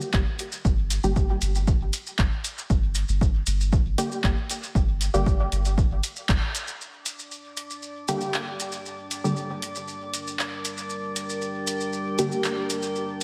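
A dreamy, reverb-soaked mix with a lush hall ambience opens this short cut from a longer dub techno piece, deep and hazy in mood over a straight 4/4 pulse. A muted, detuned sawtooth chord stab with a filter pluck, chorus, phaser and dub echo carries a filter sweep and pumps against the beat, alongside grainy, vintage maracas and a punchy, tape-warm analog drum machine of handclaps and hi-hat with its own dub echo. A round, soft triangle-and-square sub bass and an up-front electronic kick, re-recorded in a small room, hold the low end until 6.4 s, just after a band accent at 6.3 s. As the harmony settles on G minor, a glassy texture of drifting sine overtones enters at 7.2 s, calm and bright with chorus and built-in reverb. A moody, mellow ambient pad with a slow attack and sub octave joins at 9.6 s, its sustained chords pumping alongside the echoing stabs and percussion.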